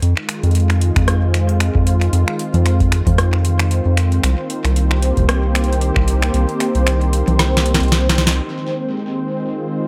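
Cerebral and intricate, this IDM excerpt at 114 BPM with a swung 16th feel moves from Fm7 to Cm7 as a smooth, detuned sawtooth pad with chorus sustains chords throughout, a round, nasal bass and a booming drum machine of congas, finger snaps, metallic low-pass-filtered hats, rim click and crisp snare with tape echo sit up front until 8.4 seconds, while a deep electronic kick thumps from 1.0 seconds, drops out at 6.3 seconds ahead of a drum fill, and the pad lingers alone in an echo-heavy mix of light digital reverb.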